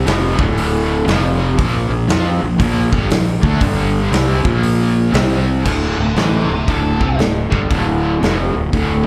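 Heard through a club PA with a moderate room reverb, this short live cut of blues rock and southern rock feels smoky and heavy, riding a swung 4/4 groove. A bright, raw garage guitar, overdriven and double-tracked, drives the riff up front, colored by harmonic tremolo and slapback echo. Beneath it a growly fingered fuzz bass sits equally forward and punchy, while a big acoustic drum kit with a natural room sound, bright cymbals, a medium-tuned snare and a punchy kick holds the beat. At 6.0 seconds a dark octave-fuzz lead guitar slips in for a brief distorted phrase through plate reverb and slapback echo, dropping out by 7.2 seconds. The harmony moves from D minor through F, B-flat, G and C power chords before returning to D minor as the second section begins at 5.7 seconds.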